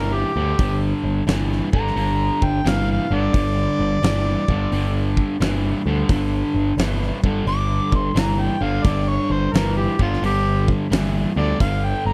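A mellow, overdriven harmonica carries a jazz-tinged solo throughout this heavy, smoky fragment of a longer blues rock and southern rock piece, its scooped notes shaded with light vibrato over a swung groove. Beneath it, a bright, double-tracked distorted guitar riff and a warm, overdriven picked bass sit up front, while a huge arena drum kit with a fat snare and punchy kick joins at 0.6 seconds. The sound is dry and close, like a 1970s studio session in a small room.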